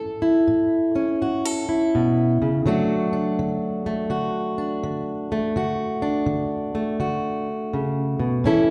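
A lush recital-hall reverb, heard in what sounds like a church or concert hall, surrounds this short blues excerpt, though the instrument itself sits up front. A single fingerpicked, plugged-in steel-string acoustic guitar carries the whole piece, playing solo from the start to 8.7 seconds. Its jumbo body gives a woody, full-bodied tone, and the old strings add a worn character across a range from A2 to A4. The music moves in a swung 4/4, with a rollicking, swaggering mood. The harmony rests on A before moving to D at 2.7 seconds.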